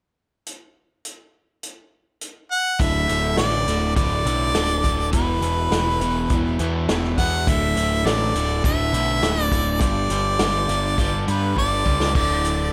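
Classic rock at 103 BPM in a straight 4/4, swaggering and confident, this excerpt opens on a vintage drum kit alone, with dark cymbals, a punchy kick and a medium-tuned snare, before a clear, up-front harmonica enters at 2.5 seconds with light vibrato and scooped notes. At 2.8 seconds a bright, double-tracked overdriven electric guitar riff and a growling, overdriven picked bass join over power chords moving through D5, E5 and G5. A drum fill at 11.6 seconds closes the passage, and light small-room reverb gives the whole a natural, studio-room feel.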